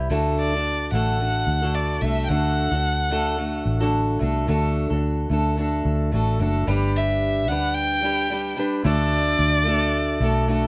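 A smooth, warm violin with vibrato carries the melody from 0.4 seconds, floating high over a carefree, sunny acoustic pop groove with a light swing. Beneath it, a boxy fingerpicked steel-string acoustic guitar and a dark, round, foam-muted electric bass with a vintage amped tone sit up front through this short excerpt. The harmony moves from D to G at 6.7 seconds and back to D at 8.9 seconds, all in a moderate studio room.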